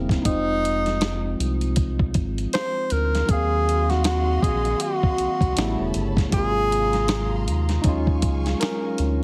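A breathy tenor saxophone carries the melody up front in a jazz style, with vibrato, scooped notes and tape echo, in this soulful, smooth R&B and neo-soul excerpt with a swung sixteenth-note feel. Beneath it, a barky tine electric piano, lightly overdriven through a combo amp with analog chorus, plays the accompaniment, while a round, deep analog bass and a dusty, gritty sampler-style drum kit with thumpy kick, hi-hat and snare sit up front; a lush bowed string section enters low in the mix at 3.3 seconds. The harmony moves from Fm7 through Ebm69, A9 and Ab13 to Ebm11, and the sound is dry and heavily compressed, like a radio broadcast.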